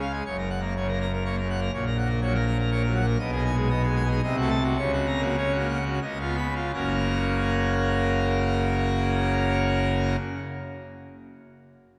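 In a straight triple metre that slows from 2.5 to 6.8 seconds, this brilliant, jubilant classical organ toccata, cut from a longer piece, features a solo pipe organ on full organ with mixtures in a majestic, romantic voicing, sitting up front in a wet church reverb as it moves through rich harmony and lands on the home chord at 6.8 seconds before the organ stops at 10.2 seconds.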